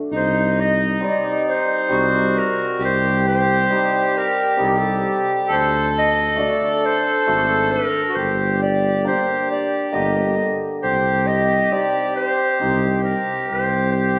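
A mellow clarinet carries the melody up front with a soft attack and a distant, roomy, classical tone in this bittersweet, soulful klezmer passage in three, cut from a longer piece. Beneath it, a reedy, smooth accordion with slow beating holds the second line, while a dark tuba, punchy with light vibrato, anchors the bass from the very start. A shimmering, ringing hammered dulcimer accompanies from 1.0 s to 13.1 s, and the whole ensemble sits in the wet reverb of a church or concert hall.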